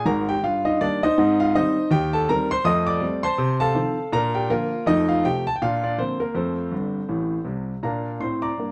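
A dark production with moderate studio reverb frames this short, swinging and exuberant stride piano excerpt in Bb major at 162 BPM, where a smooth, vintage grand piano sits up front as the solo instrument for the full 8.7 seconds, ranging from G1 to Eb6 through a chord sequence that resolves to Bb, and it plays a fill from 6.7 to 7.8 seconds.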